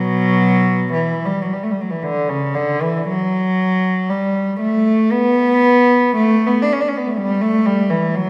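Classical and mournful, this lonely 8.3-second fragment of a longer piece features a single bowed cello played sul tasto with a soft attack, its pure, floating tone sitting up front in a freely expressive, rubato 3/4 that rings out into a wet recital-hall reverb.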